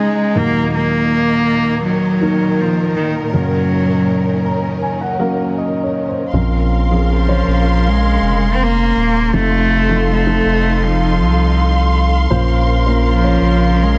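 A close, intimate single cello carries the melody with light vibrato and a soft sul tasto tone over a mellow vintage grand piano with audible action noise and a lush bowed string section holding dark, expressive chords, in a heartfelt, emotional pop excerpt at 81 BPM that moves from Ebm and Gb to Bbmadd9 and F7, with a piano fill from 4.1 s and a deep, thick, saturated sub bass entering up front at 6.3 s, set in a light small-room reverb.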